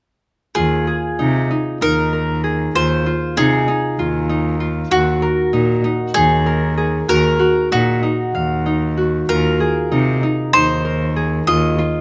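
A bright, picked bowl-back mandolin opens the melody at 0.5 s, its doubled strings up front, joined almost at once by the ringing, fingerpicked arpeggios of a Celtic harp and the earthy, biting bowed line of a single rich cello with a smooth top. This pensive, hypnotic piece of contemporary chamber music moves in an uneven 7/8 with a straight feel, its harmony shifting from Fm7/Eb to Ebm at 4.9 s and back again. Close, detailed microphones and light reverb keep the three acoustic voices intimate in this short fragment of a longer work.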